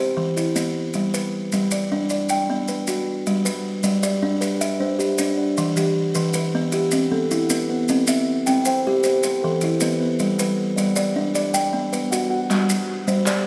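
A buzzing, woody kalimba opens this fragment of a longer piece with thumb-plucked arpeggios up front. It is joined at 0.4 seconds by grainy, band-limited maracas and at 3.5 seconds by a second, mellow, fingertip-plucked kalimba, together forming a hypnotic, warm southern African traditional mbira-style interlocking cycle in G major at 104 BPM in 12/8. The cycle moves through Em, G, Bm and C within a concert-hall reverb before a crisp, distant group handclap arrives at 12.5 seconds.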